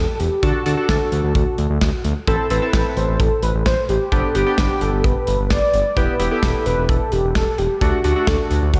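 A velvety synth lead carries the melody from the very start, its detuned sawtooth voices thickened with chorus and trailed by a diffuse ambient delay as it moves between F#4 and D5. This short synth-pop excerpt runs at 130 BPM in a straight 4/4, with a driving yet cool mood. A smooth synth bass with gentle vibrato holds down the low end alongside it, while a polished studio drum kit enters at 0.2 seconds with a punchy kick, a medium-tuned snare and hi-hat sitting up front in an airy small-room sound. Round analog keys join at 0.4 seconds a little lower in the mix, their detuned, chorused tones shaded by ring modulation and a filter sweep as they outline a progression of D, Am, G, Em and back to D. A lush hall reverb soaks the whole mix, giving it a dreamy, spacious glow.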